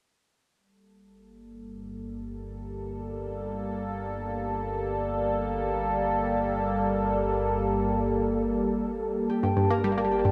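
Mysterious and hypnotic, this short cut from a longer piece of ambient, sequencer-driven space music drifts in free time in G minor, as a bright, resonant pad fades in from 0.6 seconds on a sustained Gmadd9 chord, coloured by chorus and phaser, with a deep, evolving analog drone fading in beneath it. Near the close, at 9.3 seconds, a mellow concert harp adds ringing, fingerpicked arpeggios through tape echo, and a moment later a round, detuned analog pluck sits up front with a short, decaying riff. A huge, wet reverb with a long tail surrounds it all.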